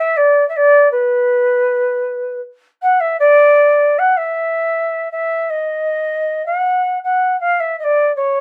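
Andean folk with an earthy, wistful mood at 78 BPM in 2/4, this brief fragment of a longer piece features a lone quena playing a pure, mellow, straight-toned cane line between B4 and F#5, tongued and set up front in a small room's moderate ambience, moving into a new section at 5.9 seconds, all with the rough feel of a home demo mix.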